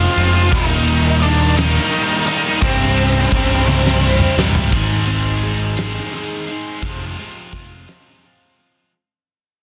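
A dense, heavily limited modern master with light reverb and small-room ambience frames this anthemic, restless alternative rock fragment in a straight 6/8, cut from a longer piece. A bright, double-tracked stack guitar drives an overdriven riff up front, over a growly, amped electric bass and a huge arena drum kit with a fat snare, punchy kick, crashes, ride, hi-hat and toms. A dark octave-fuzz lead guitar carries the melody, while a very quiet vintage string machine of violins adds shimmering, warbling sustained chords with a soft attack and ensemble chorus. The harmony moves from Fm through Eb and C, and a drum fill at 3.7 seconds leads out of the opening passage as the lead guitar drops away. From 4.7 seconds the strings fall silent and a picked steel-string acoustic guitar takes up arpeggios in the background, its finger squeak audible, over Ab and Fm chords while the recording fades out.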